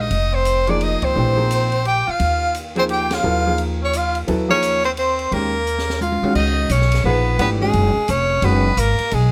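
A breathy, whispered soprano saxophone carries the melody from the first moment in this short modal jazz piece, which swings lightly in three. The soprano sits up front with bright, intimate tone, light vibrato and scooped notes, while a distant, roomy tenor saxophone plays a soft second line beneath it. A clear baby grand piano with short sustain provides accompaniment, and a woody, thumpy pizzicato upright bass anchors the low end up front. An acoustic drum kit with dark cymbals, a high-tuned snare and a boomy kick sits further back in a natural studio room. The band lands two accents early on over suspended Bb and Eb chords, and a drum fill at 5.7 seconds leads into a new section at 6.4 seconds, where the harmony moves to Db9sus4. The piano drops out at 8.6 seconds, and light reverb gives the whole a spiritual, open mood before the cut.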